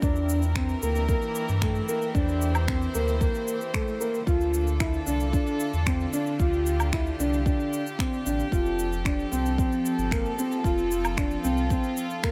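A worn, boxy grand piano sits up front, playing a mellow riff through a tape echo across this short excerpt from a longer piece of piano-and-strings electronica. Behind it, a close studio string section holds pure, floating sustained chords, bowed sul tasto with a soft attack and a dark shade, as the harmony moves from Edim to Dm at 4.3 seconds and on to Fadd9 at 8.5 seconds. A round sine sub bass with a fast attack pumps against the sidechain and drops out at 11.8 seconds. An electronic kick with a deep, layered, produced punch drives a straight 4/4 at 113 BPM, and a softer layer of electronic shaker, finger snaps and woodblock sits beneath it. The whole passage is a melancholic, hypnotic drop, tuned to A4 = 436 Hz, with light reverb and a faint studio ambience around it.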